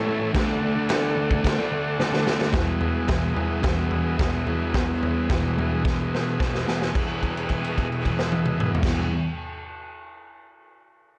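Garage rock with a raw, swaggering attitude, this short excerpt cut from a longer piece moves at 109 BPM in a straight 4/4, centred on E mixolydian. A thick, double-tracked fuzz guitar drives the riff up front, its picked, distorted tone sitting low and heavy, while an overdriven combo organ holds sustained chords above it with a buzzy, vintage sound and heavy vibrato. The drum kit comes in at 0.3 s, a punchy, gritty acoustic set with dark cymbals, a medium-tuned snare and a pumping small-room sound whose top end is rolled off. The harmony opens on D and moves to E at 2.5 s. Drum fills arrive at 2.0 s and again from 5.8 s to 6.9 s, and a held note stretches from 6.9 s to 8.8 s. The whole recording carries moderate spring reverb and a cassette tape character that add to its lo-fi grit.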